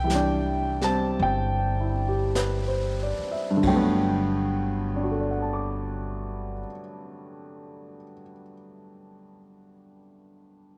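Swung eighths in a slow 4/4 at 45-56 BPM, easing down in tempo at the start, carry this tender, late-night jazz ballad excerpt in G major, where an up-front, woody upright piano accompanies through to 10.8 seconds over a pizzicato upright bass with steel strings that stops at 6.6 seconds and an airy, polished brush kit with dark cymbals, a high-tuned snare and a boomy kick that stops at 4.7 seconds, set in light reverb and small room ambience.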